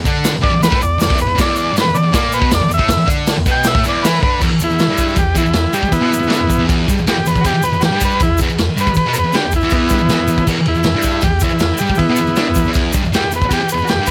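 A straight 4/4 pulse at 158 BPM drives this raw, rowdy garage rock cut on an E5 chord, with a punchy, dark-cymbaled acoustic drum kit and a double-tracked, bright fuzz guitar riff up front, a grainy shaker tucked in the background, and a buzzy vintage combo organ with heavy vibrato that takes a solo through the first 4.4 seconds before carrying the melody, all under light reverb.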